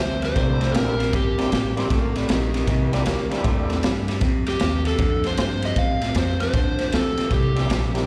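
Electric blues shuffle with a rollicking, soulful swing, cut from a longer piece and moving from C7 to F7 and back. An overdriven slide guitar carries the melody with a slapback echo, stepping aside when a raspy, growling tenor saxophone takes a short jazz-style second line at 1.8 seconds, then returning at 4.5 seconds. Beneath them, an electric guitar through a small old amp picks a slightly broken-up, lo-fi riff, while a woody pizzicato upright bass holds the low end. A raw garage drum kit sits up front with a boomy kick, dark cymbals on the ride and a saturated, gritty sound that pumps with its small room. A thick tonewheel organ fills in the middle through a slow rotary speaker and light overdrive, dropping out before coming back at 7.6 seconds, all heard as a live gig through the venue's PA with a recital-hall reverb.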